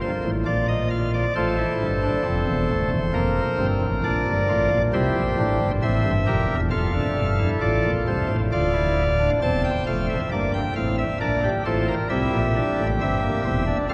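Set in a straight 4/4 pulse, this joyful, lively fragment of a baroque-style four-part fugue is carried by a solo pipe organ on its cornet stop, whose nasal, up-front voicing with a touch of chiff spans from D1 to A5. The harmony moves through Bb, F and C7 before shifting at 8.5 seconds into a new section of Dm7, Gm and C. A seven-second cathedral reverb wraps the organ in a vast, lingering church ambience.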